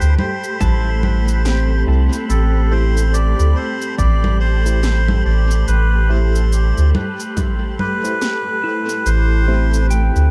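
This ambient dub fragment opens at once on a deep, spacious A minor haze at 71 BPM, with a reedy, breathy melodica carrying the melody through dub echo over a cloudy, evolving granular pad that holds a sustained Am7 chord with its own reverb and a gritty, vintage 12-bit sampler edge. Underneath, a soft, round sub bass sits up front in the mix, its fast attack giving each note a firm start before it sustains. A clean electric pedal steel guitar, played with fingerpicks and slide, spins compressed arpeggios with volume swells in the background, its echoes trailing off into the space. Electronic cabasa, congas and a woody snare shuffle with a 16th-note swing, sent through a small room and dub echo, while a faint, airy, wind-like noise texture hovers high and dark far behind. A punchy, overdriven electronic kick enters at 0.6 seconds, and a tine electric piano adds background stabs from 1.9 seconds, heard as if through its own built-in speakers. 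The passage is cut from a longer piece and stays on a single section, bathed in a light overall reverb.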